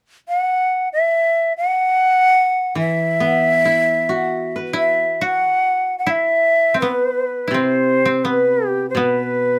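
Still and austere, this short cut from a longer piece of Japanese chamber music unfolds in free time, with an airy, bright shakuhachi carrying the up-front melody from 0.3 seconds in a straight, tongued tone with audible chiff, joined at 2.8 seconds by a dry, woody fingerpicked koto accompaniment and at 4.7 seconds by a second koto line, all set in light reverb.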